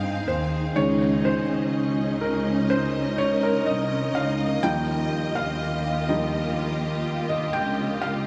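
A soft, felt-muted upright piano with a mellow, intimate tone leads this tender, emotional pop excerpt from the first second, resting on a lush, bowed string section that sings with vibrato and portamento and a dark, woody cello section holding the bass, the whole mix soaked in a huge, dreamy ambient reverb for its brief 8.3 seconds.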